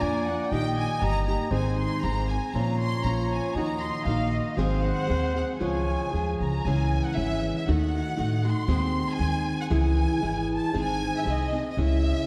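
A lightly swung 2/4 pulse at 117 BPM drives this romantic, proud mariachi passage, cut from a longer piece. It opens in Db major before turning to C# harmonic minor at 6.6 s. A lush bowed violin section carries the expressive melody with vibrato, while a mellow, smooth-topped trumpet plays a classical-style second line until 6.6 s. Underneath, a bright, up-front fingerpicked nylon-string guitar with audible finger squeak and a woody, thumpy pizzicato upright bass supply the accompaniment and bass line, all bathed in a spacious concert-hall reverb.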